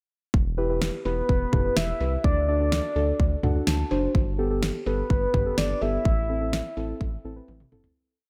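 A punchy, electronic drum-machine beat with a fat snare and syncopated toms, touched by analog delay, drives this melancholic, nocturnal synth-pop piece alongside a deep, pulsing eighth-note analog bass. Muted, felt-like synth keys add close-voiced off-beat chords with chorus and a fill at 3.2 seconds, while a soft, octave-layered lead with vibrato, chorus and delay carries a motif-based melody. The echo-heavy mix sits in light digital ambience and fades out from 6.1 seconds, closing on a drum fill at 7.5 seconds.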